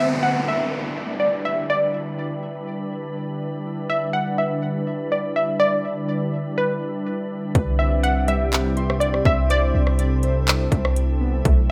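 A crystalline wavetable pluck melody with chorus and digital delay opens this melancholic, hazy cloud-rap piece in E minor at 123 BPM in a half-time feel, over an ethereal, glassy FM pad with ensemble chorus and sidechain pumping and a brief electronic downlifter; at 7.5 seconds, as the chords move from Em7 to Cmaj7, warbly lo-fi synth key arpeggios and a deep, boomy 808-style bass enter, joined at 7.6 seconds by an up-front trap kit of hard-clipped kick, metallic hi-hats, handclaps and rim clicks, while a very quiet texture of drifting overtones slips in beneath, all within a lush hall reverb and a rough home-demo mix.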